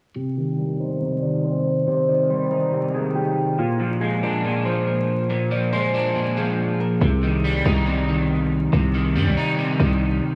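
A growling, buzzy 808-style bass arrives up front at 7.0 seconds beneath a slightly broken-up electric guitar accompaniment with analog chorus and a fingerpicked concert harp melody ringing through tape echo and a low-pass filter, in a menacing, brooding half-time trap excerpt at 140 BPM in C minor, moving from Cm to Bb7 and back under a filter sweep, set in a dreamy, reverb-soaked mix with vinyl crackle.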